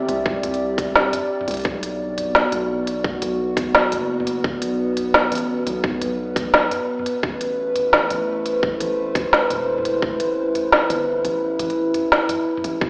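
A swung half-time groove at 172 BPM drives this tense, spacious drum and bass excerpt in B phrygian, where a tape-warm electronic kit of woody snare, crisp hats and toms sits up front beside a tight, layered kick that drops out at 11.4 seconds, while a deep sine 808-style bass holds long notes beneath a moody, detuned analog pad with gritty 12-bit sampler texture, chorus and sidechain pumping that moves from Cadd9 to Bm at 1.7 seconds and Am at 7.2 seconds, all bathed in a huge stone-room reverb with a lo-fi AM radio tint.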